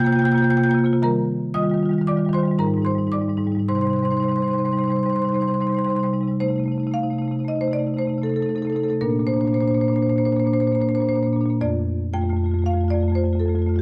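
A rubato 5/4 pulse at 115 BPM carries this reflective, hypnotic passage from a longer contemporary classical work for solo marimba in C dorian, its woody, smooth padauk bars struck with medium hard mallets sounding percussive and up front across a span from F2 to G6, moving through C7sus4, Ebadd9, Abmaj7 and Cm before a second section from 6.4 s turns to Cm6, Bbadd9 and F69, bathed in a moderate large-studio reverb within a dark production.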